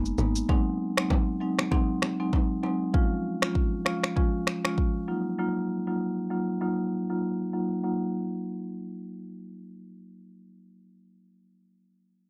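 The recording is dry and gritty, with little reverb, and it sounds cut from a longer piece. This is a sultry, smooth afrobeats groove in 4/4 with a swung sixteenth-note feel. An electronic, produced afro-pop drum kit sits up front with a deep kick, finger snaps, rim click and shaker, and it drops out at 4.9 seconds. Bright, vintage-toned bongos and congas, played with hard hands and a band-limited acoustic character, join briefly and stop at 2.8 seconds. A warm marimba struck with medium mallets carries the accompaniment through a low-pass filter, with a filter sweep over the opening section, moving through Ab7, Db and Ebmadd9 and continuing on its own until 11.7 seconds.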